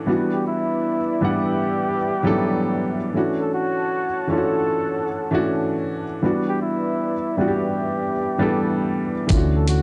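A woody, intimate upright piano with audible action noise and cassette-tape grit opens this hazy, nostalgic lo-fi hip hop excerpt, while a deep, detuned analog pad holds moody chords in the background between Em7 and Dmaj7. From 0.3 seconds a veiled, bucket-muted trumpet carries a jazz-style solo melody with vibrato and scooped notes, trailed by analog delay and plate reverb. At 9.3 seconds a round, foam-muted electric bass, a gritty sampler-style kit with a thumpy kick and hi-hat, and distant maracas join, all within a dark, softly swung production.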